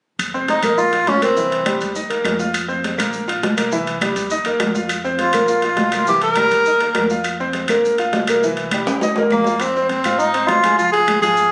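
Salsa at a fiery, passionate 204 BPM in F minor, cut from a longer piece, where a breathy, whispered tenor saxophone sings up front in short phrases at 0.5, 5.2 and 9.3 seconds over a brilliant grand piano with audible action noise, thumpy gut-string pizzicato upright bass, ringing metal-shell timbales, background congas with hard hands on thin high-tuned skins, dry woody claves and grainy vintage maracas, all caught on a phone in a reverberant club room with a drum fill leading into a new section where the chords shift to Fm and Db.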